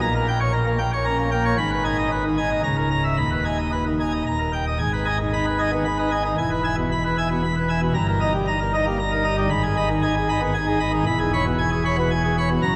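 Heard through a long, wet cathedral reverb with vinyl crackle, this majestic, stormy fragment of a classical organ toccata sits in G# minor at 115 BPM in 3/4. A solo pipe organ on full plenum with mixtures plays up front in a brilliant baroque voicing, its pipes speaking with a crisp chiff across a span from C#1 to B5. Dark diminished and minor harmonies drive the opening, and a new passage begins at 4.8 seconds before the piece is cut off at 12.8 seconds.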